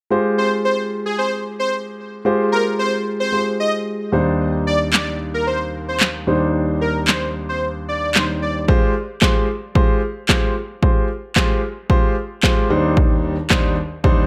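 A straight 4/4 pulse at 112 BPM drives this energetic dance-pop excerpt, where an up-front concert grand piano with deep bass pumps under sidechain through Fmadd9 and Cmadd9/Eb chords, a smooth, evolving detuned supersaw melody with sidechain pumping rides on top until 8.5 seconds, and a punchy, tape-warm analog drum machine with kick, snare and handclaps enters at 4.9 seconds, set in a light digital ambience.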